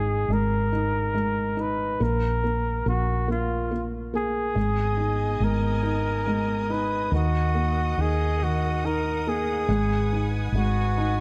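A dark, warm production with light studio reverb frames this brief, aching pop ballad in a slow six-eight at 47 BPM, cut from a longer piece. A clear, vintage-toned flugelhorn carries the melody up front, its vibrato and scooped notes given a trace of delay. Beneath it, a felt-muted upright piano offers soft, intimate accompaniment, with the mechanical noise of its action audible. A round, amped hollow-body electric bass sits prominently in the mix, anchoring the melancholic harmony as it moves from Absus2 through Abm and Ebm to a closing Abm7. At 4.5 seconds a focused studio string section enters with bowed, sustained chords, adding a quiet layer of vibrato behind the horn.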